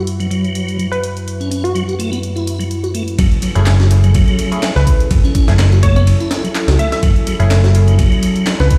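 Funky and swaggering, this breakbeat excerpt opens on a warbling, nostalgic pad holding sustained chords, with phaser, chorus and a pumping sidechain, beside a piping tonewheel organ riff run through fast rotary speaker, chorus vibrato, gritty 12-bit sampler texture, a low-pass filter and tape echo. A punchy analog drum machine adds overdriven handclaps and hi-hat, and at 0.9 seconds a glassy wavetable pluck enters with a crystalline, evolving melody colored by chorus, an AM radio tone and tape echo. The drop hits at 3.2 seconds, when a dark, round, amped picked electric bass and a compressed, pitched-up breakbeat sampler kit arrive up front, its thumpy kick, high-tuned snare and ride cymbal carrying a gritty, tape-tinged character. Shortly after, a nasal, band-passed chord stab with a fast attack, ring-modulated bite, phaser and tape echo punctuates the groove. The swung sixteenths give the loop a loose strut, and the whole mix sounds as if it is blasted through a big sound system in a bare stone room.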